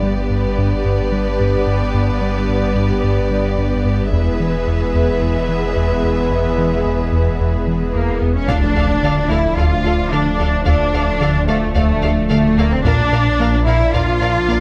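A dark studio violin section, lush symphonic violas, an up-front cello section, a round, wave-folded analog bass riff, a deep sine sub bass and a detuned, chorused sawtooth pad holding sustained chords open this vast, futuristic hybrid orchestral and electronic film-score cue at 110 BPM in 4/4, building over G and E with very quiet taiko hits at 4.1 seconds, before a faint electronic impact at 8.5 seconds brings back the quiet taiko, a distant symphonic violin melody on a high F and a background double bass section as the harmony moves to D minor and then B-flat, all in a light reverb.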